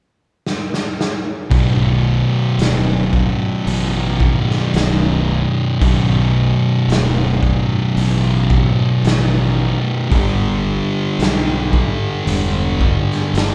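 A raw garage drum kit opens this ominous, sludgy stoner and doom metal excerpt at 0.5 seconds with a fill, its punchy kick and medium-tuned snare sounding dark and up front with a rolled-off top. At 1.5 seconds two thick, picked fuzz guitars enter together on a distorted riff, one sitting more forward than the other, over a round, overdriven fingered bass with tube saturation. The slow, straight groove holds on a Bm chord before shifting to G at 10.1 seconds, all heard as a band playing live in one room with light reverb.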